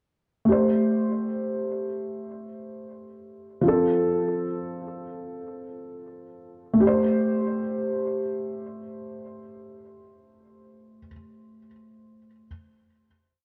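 Brooding and hard-hitting, this complete hip hop and trap piece in A minor unfolds in free time as a solo felt-muted upright piano, intimate, boxy and up front behind a low-pass filter, holds spread-voiced chords repeated like a sampled loop, moving from Am7 to F through a breakdown before settling on a final Am7 chord at 6.8 seconds, all wrapped in a lush hall reverb and a dark production.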